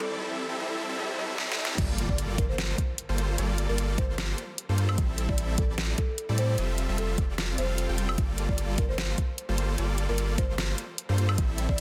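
A dense, heavily limited master with light reverb carries this bittersweet, lush future bass excerpt in G dorian at 150 BPM, swung and in half-time, as huge, bright, detuned supersaw chords and a woody, mellow soft-mallet marimba melody set in the background pump and echo over a build-up with an electronic riser and filter sweep. A pop drum kit with a deep snare, hi-hat, crash and woodblock enters with a fill at 1.4 s, and the drop lands at 1.8 s with an impact as a knocking electronic kick and a thick, saturated triangle sub bass arrive up front, both drum parts carrying overdrive. The harmony moves from Gm9 through Am7 and Fmaj9 and back to Gm9.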